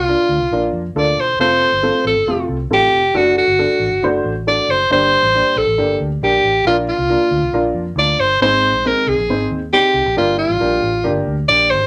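A straight, uptempo 4/4 groove drives this joyful, warm fragment of 1960s-style soul, where an up-front, edgy alto saxophone sings a jazz-flavored solo melody with light vibrato and scooped notes over a dark, worn upright piano, woody, intimate and slightly detuned with audible action noise, while a foam-muted vintage electric bass, round and punchy, anchors the low end in a small room's moderate ambience.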